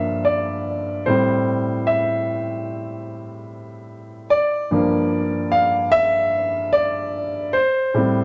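A dry, close studio sound in a 1970s style, touched with light reverb, frames this short excerpt of smooth, cinematic soul at 74 BPM in 4/4, with a gentle swing on the sixteenths. A solo baby grand piano, warm, natural and up front, plays alone for the full 8.2 seconds, ranging from G2 to F5 in G dorian and moving between Gm7 and Am7 chords.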